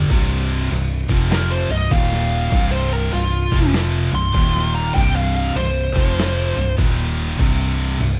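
A swung 4/4 groove drives this hypnotic, ominous stoner and doom metal excerpt, where a muffled, pitched-down lo-fi sampler-style drum kit with a thumpy kick and crash cymbal backs a round, hollow-body fingered bass, a bright, scooped high-gain guitar and two dark fuzz guitars churning a riff in the background over power chords on C, Eb and F, while an up-front, compressed fuzz lead guitar with wah solos from 1.3 to 6.7 seconds in a light, live-room reverb.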